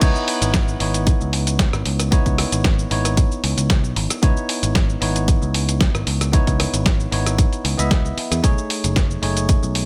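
A groovy, sleek nu-disco excerpt opens at full drop energy at 114 BPM in 4/4, with a light swing on the 16ths in C# minor. A punchy electronic kick sits up front, layered and tape-warm with the sound of a large room, and it drops out at 9.6 seconds, just before the end. Around it, a gritty, compressed sampler-style soul kit of crash, hi-hat, rim click, shaker and a medium-tuned snare shares the same roomy, up-front character. A picked electric bass growls low and punchy, its tone thickened by tube saturation and trimmed with a high-pass filter. Above, a bell-like tine electric piano plays clean, bright accompaniment with sidechain pumping and tape echo, as the harmony moves from C#m9 to B13 at 8.4 seconds. The mix is dry and close, with little reverb.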